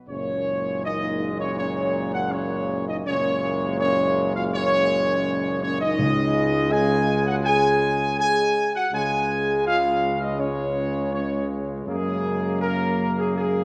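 A wet scoring-stage reverb with a 1.7-second tail surrounds this majestic, triumphant brass fragment, cut from a longer classical piece in a straight 4/4. Up front, a dark trumpet section carries the melody with a smooth top and tight ensemble playing. Beneath it, a bright trombone section and a mellow French horn section hold sustained chords that move from Gbadd9 to Dbsus2 and back again, with the horns sitting in the background. Trumpets, trombones and a distant, roomy tuba on the bass line all share a light vibrato. Timpani struck with soft mallets add a round, close and dry accent in the background from 6.0 to 7.1 seconds.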